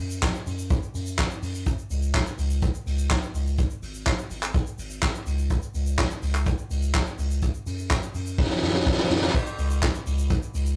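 This short dance-pop excerpt features a vintage brush drum kit, sounding acoustic and roomy, with a punchy kick, a fat snare, dark cymbals and a rolled-off top, all played with brushes and sitting up front. Alongside the kick and snare, the kit carries hi-hat, shaker, handclaps and crash cymbal, driving a straight 4/4 groove at 125 BPM with a carefree, euphoric mood. A round analog bass underpins it from the start, deep and nasal with a fast attack and sustained, dark tone, moving between Ab1 and Gb2. The track sits in a drop throughout, with a drum fill from 8.4 to 9.3 seconds before the section repeats. A moderate studio reverb and tube saturation give the whole a rough rehearsal-room character.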